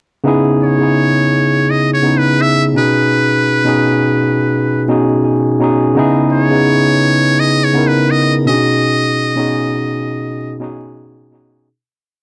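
This short R&B piece has an introspective, soulful mood, moving at a relaxed 84 BPM in 4/4 with a light sixteenth-note swing. A bright tine electric piano, lightly overdriven through a combo amp, sits up front with rhythmic chords in rootless voicings, dressed with grace notes and short fills, including a fill from 4.9 to 6.0 seconds. A trumpet with a metal mute enters at 0.6 seconds, carrying a motif-based, pop-style solo melody of song-like phrases in a buzzy, thin tone with light vibrato and a slapback echo. The harmony alternates between C#m7 and B6 throughout the single verse. The sound is a dry, close 1970s-style studio recording with a bed of vinyl crackle, and the piece fades out from 8.8 seconds to its end at 11.7 seconds.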